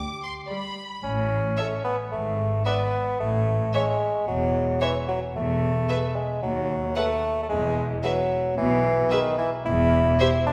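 In a straight 4/4 at 111 BPM in A major, this playful, mischievous film cue from a longer piece sets a bowed violin section singing a focused, vibrato-rich melody over a background second violin line, dusky viola accompaniment, smooth cello and expressive double bass sections on the bass, and a very quiet, soft-edged French horn section holding chords, while a clear, up-front solo bassoon joins at 1.0 s with quirky accompaniment, all bathed in a lush concert-hall reverb.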